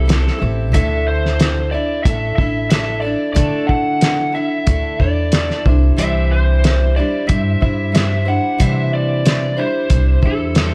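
Folk rock and heartland rock at 92 BPM in a dusty, wistful mood, this short cut moves through Am7, Dsus2 and Cadd9, with an overdriven, lo-fi lead guitar through a small cranked amp carrying the melody over a brilliant, fresh-stringed picked acoustic guitar, a woody pizzicato stand-up bass, and an up-front, cloth-damped drum kit whose muffled, gritty hits feature a fat snare and tight kick that enter at 0.1 seconds, all set in a dark production with light reverb.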